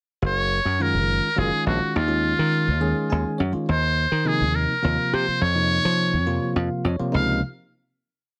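A buzzy, metal-muted trumpet leads this slick, bright electric jazz fusion piece in 6/8, spinning a motif-based solo melody with light vibrato and a slapback echo over a punchy, foam-muted thumbed slap bass riff and syncopated quartal chord stabs from a bell-like tine electric piano, which adds fills at 2.8 and 6.3 seconds before everything settles on a final Dbmaj7 chord at 7.1 seconds in a lightly reverberant room.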